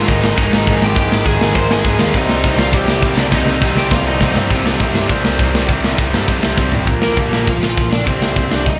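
Punk rock with an urgent, raw edge, this short excerpt is cut from a longer piece and sounds like a live gig heard through the venue's PA, with small-room club reverb around it. A bluesy, distorted lead guitar carries the melody with slapback echo and digital delay, dropping out at 4.4 seconds and returning at 7.0 seconds. Beneath it, a bright, overdriven garage guitar with slapback echo plays a riff throughout in the background, joined until 6.9 seconds by a very quiet crunchy guitar and a very quiet double-tracked, compressed fuzz guitar. A dark, round hollow-body short-scale bass holds the low end. The tight metal drum kit sits up front, saturated and gritty, with bright cymbals, a medium-tuned snare and a tight kick, and fills mark the passage from 3.3 to 4.5 seconds and again at 6.6 seconds.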